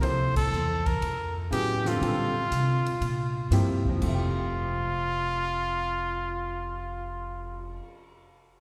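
A forceful, up-front trumpet carries the melody in this short modal jazz excerpt, its clear tone shaded with light vibrato and scooped notes as it moves between F4 and C5. The mood is spiritual and searching, set at 120 BPM in 4/4 with a swung eighth-note feel in F major, and the full band lands an accent at 0.3 s. Beneath the horn, a grand piano with a smooth, vintage character and short sustain supplies accompaniment over the harmony, shifting from Bbmaj9 to Fmaj9 at 4.0 s. A woody, growly pizzicato upright bass anchors the low end, while an airy, polished big-band kit swings on ride, hi-hat, snare and punchy kick, adding crash and a cymbal swell. A long church reverb of about 2.7 s gives the ensemble the spacious sound of a large hall.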